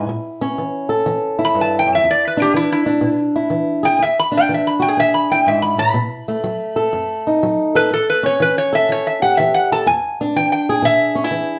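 A metal-body resonator slide guitar carries the melody up front, its metallic, nasal voice sung out with a steel bar and fingerpicks across a solo that runs the full length of this short cut from a longer piece. Beneath it, a fingerpicked old ladder-braced acoustic guitar lays down the accompaniment, dark, woody and boxy, strung with old strings. This is laid-back, soulful acoustic country blues in a swung 4/4, moving through a dominant-seventh progression of A7, E7 and B7 before settling back to E7 near 9.9 seconds. The slide guitar drops out at 11.2 seconds, leaving the acoustic guitar to ring on briefly until 11.6 seconds. A wet studio reverb places the pair a little further back in the room, giving the duo an intimate yet roomy sound.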